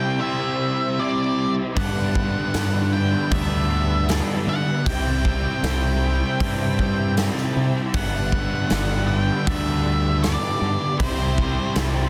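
This hazy, melancholic shoegaze and dream pop fragment opens with an octave-fuzz lead guitar carrying the melody over two overdriven guitars playing a riff and a lush, detuned unison pad that holds sustained chords in the background. The crunchy guitar sits up front with ensemble chorus, while the biting guitar sits in the background, washed in reverse reverb. The fuzz lead is colored by distortion and tape echo, and the pad shimmers with chorus and phaser. At 1.8 seconds, a growling fingered electric bass with overdrive joins a huge, natural-sounding arena drum kit, whose punchy kick, medium-tuned snare and hi-hat ring out in a big room, and a jingly, saturated tambourine slips in quietly at 2.5 seconds. At a slow 78 BPM in straight 4/4, tuned to A4 = 442 Hz, the harmony sways between C and G, all set in a small room ambience with a dense, heavily limited modern master, before the clip cuts off mid-piece.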